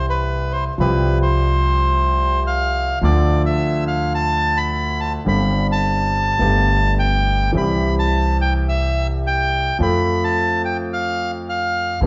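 Tango at 107 BPM with a rubato, playful yet nostalgic feel, tuned to A4 = 444 Hz, where a reedy, dark bandoneon carries the melody up front over a warm, intimate grand piano with audible action noise and long sustain, while a woody, thumpy pizzicato upright bass on gut strings anchors the low end, all set in a large, wet studio reverb heard from further back in the room, with dulled highs, as the harmony moves from C through Dm and Gsus4 back to C and on to F in this short excerpt from a longer piece.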